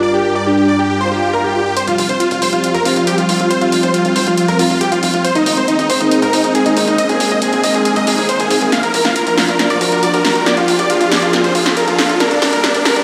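A straight 4/4 pulse at 138 BPM drives this soaring, euphoric uplifting trance excerpt in F dorian, where a huge, bright supersaw lead with tape echo carries the melody over a lush, detuned unison pad treated with chorus and phaser, while a velvety, mellow second lead with vibrato and dub echo sounds only in the first second. A swell arrives at 1.0 s and a riser runs through the build-up, the punchy analog drum machine enters up front at 1.8 s with hi-hat and snare, and a tight, very quiet sequencer bass with a filter pluck follows just after, as the harmony moves through Fsus2 and Abadd9 to Bb, where a drum fill begins at 8.7 s. The whole mix sits in a moderate recital hall reverb plus a large studio reverb, as if played on a big sound system in a bare room.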